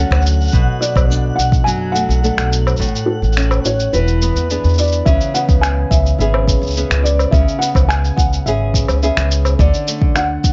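A straight 4/4 pulse at 106 BPM drives this autumnal, intimate folktronica excerpt, carried by muffled, pitched-down electronic finger snaps, woodblock and shaker from 0.1 seconds and a deep, tape-warm electronic kick that drops out between 2.8 and 5.1 seconds before returning for the second section. Underneath, a woody, thumpy pizzicato upright bass on gut strings sits up front, while a bright, fingerpicked nylon-string guitar plays arpeggios bathed in plate reverb and delay. The melody comes from a felt-muted upright piano, mellow and boxy with thick felt and audible action noise, also treated with plate reverb and delay. For the first 5.1 seconds a twinkling granular texture with an octave-up shimmer and slow attack hovers faintly in the background. The harmony moves from Dmaj7 through Bm7, A6 and E7 into a long C#m7 before settling back on Dmaj7, all within a lightly reverberant, soft-topped mix.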